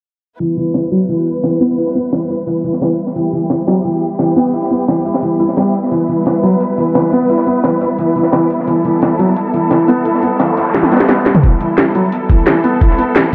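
Futuristic and mechanical, this short cut of dark technical drum and bass sets soft, muted felt-piano arpeggios with delay and a filter sweep against lush, bowed symphonic strings with vibrato and portamento, both pumping under sidechain, while a cracking, bright-hatted electronic drum kit drives up front over a dark, smooth breakbeat kit in the background, a noise sweep and drum fill lead into a knocking electronic kick at 11.4 seconds, and a moderate hall reverb adds space.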